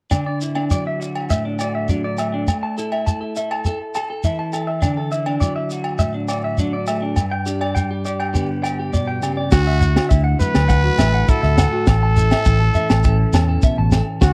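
A sunny, carefree highlife guitar band groove opens at 0.1 s with two electric guitars. One is dark and slightly broken-up, picking compressed accompaniment through an analog chorus. The other is bright, clean and twangy, spinning picked arpeggios higher up, bathed in spring reverb and tape echo. Beneath them a grainy, mellow shekere sits up front, while agogo bells ring more softly from a live room as the chords move through Dadd9, A5 and G in a straight 4/4 feel. At 9.5 s the band fills out with a tight funk drum kit (high-tuned snare, tight kick and crash cymbal), a round, amped fingered bass, and a raspy, growling trumpet taking a brilliant, punchy pop-style solo melody with light vibrato. The recording has a dry, close 1970s-style studio sound with minimal room ambience, and this passage is cut from a longer piece.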